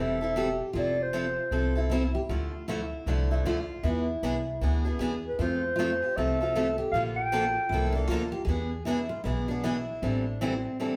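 A mellow, vintage-toned clarinet sits up front with light vibrato, subtone and scooped notes, playing two short melodic phrases at 0.0 and 5.3 seconds in this bittersweet, virtuosic slice of swung acoustic jazz manouche. Beneath it, a bright, boxy parlour guitar picks the accompaniment up front, a full-bodied dreadnought with fresh strings and audible finger squeak adds a second line, and a woody, thumpy gut-string upright bass plucks a dark foundation through chords moving from Am7 and Fmaj7 to Bbmaj7 and E7. The band plays live together in a large studio with a wet reverb, and the passage is cut from a longer piece.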